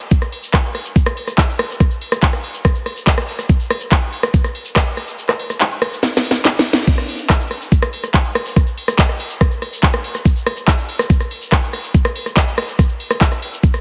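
Heavily compressed and radio-thin under light reverb, this psychedelic, hypnotic trance excerpt at 142 BPM runs on a knocking, overdriven electronic kick up front, a layered electronic drum kit with cracking snare, metallic hi-hats, handclaps, rim clicks and crash cymbal, tape-warm and re-recorded in a small room, and a grainy, mellow tube shaker placed close. The kick drops out from 5.2 to 6.9 seconds while a drum fill runs from 6.0 seconds, with a band accent at 6.7 seconds, before the drop returns.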